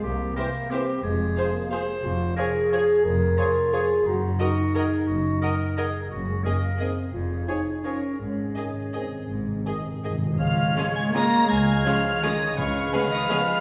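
Sweeping and elegant, this classical passage in 3/4 moves with a supple rubato, cut from a longer piece and heard from further back in a recital hall with a wet, lingering reverb. A rich violin section carries the melody up high with smooth, even vibrato. A second, more focused violin line sits in the background alongside a distant viola section. Beneath them, cello and double bass sections bow the bass line, and a mellow French horn section holds sustained chords. Woodwinds add inner lines: a bright, vintage-toned clarinet, an airy concert flute with a soft attack, a warm, roomy oboe and a gently vibrato-tinged bassoon. Timpani struck with medium mallets play a fill from 8.2 to 10.4 seconds, and a clear, tight trombone section enters very quietly with sustained chords at 10.8 seconds as the music settles onto Db.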